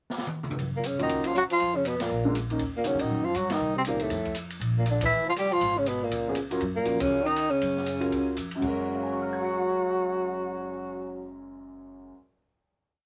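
A drum fill on an open kit with dark cymbals and a boomy kick opens this playful small-group swing piece. A woody pizzicato upright bass plays in a two-feel under a breathy, scooped tenor saxophone hook and a raspy, growling trombone with octave doubling, while an up-front, warm upright piano adds syncopated drop-2 comping, drops out at 4.1 seconds and returns at 6.3 before the band reaches a final chord at 8.6 seconds in a small, natural-sounding room.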